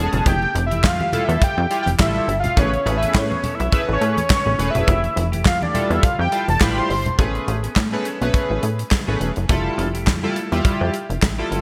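Bright 1980s-style digital production bathed in a lush hall reverb frames this smooth, danceable early-eighties boogie funk cut at 104 BPM with a light sixteenth-note swing, where a fat, detuned analog lead with chorus, phaser and vibrato sings a mellow solo up front over glossy chorused polysynth chords moving between Fmaj9 and Amaj9, a punchy, plucky analog bass, a faint twangy clean electric guitar riff, a polished studio drum kit with tight kick, snare, hi-hat and handclaps, and soft, low-tuned congas in the background, until the lead and congas drop out at 7.2 s and the groove carries on.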